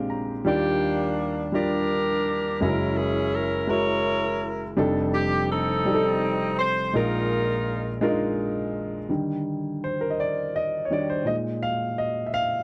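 Set in a slow 6/8 at 56 beats per minute counted in dotted quarters, this short excerpt of soulful, hopeful gospel sits in Eb major. A baby grand piano carries the accompaniment throughout, its natural tone and short sustain placed up front, opening with a brief fill before the melody arrives. An edgy saxophone section enters at 0.5 seconds with a jazz-style ensemble line, blending vibrato, a soft attack and a smooth top, and drops out at 8.0 seconds. The harmony moves through rich colors such as Ebmaj9, Gb9 and F13 before settling on Bb7sus4, and from 9.1 seconds the piano plays alone over Ebmaj7 and Bb7sus4. The sound is dry and close in the manner of a 1970s studio, touched with light reverb.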